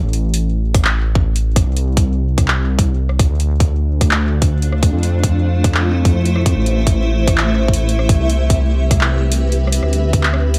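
A dry, close sound frames this eerie, cerebral IDM excerpt at 147 BPM, where a deep, rumbling detuned saw bass sits up front from the start, tape-hued analog drum machine handclaps, metallic hi-hats and rim clicks carry a delay, a tight electronic kick with large-room character enters at 0.7 seconds and drops out between 9.0 and 9.8 seconds, and a cloudy, blurred granular pad with a slow attack and built-in reverb enters at 4.4 seconds over chords moving from Dm7 through Fmaj7, Am7 and Cmaj7.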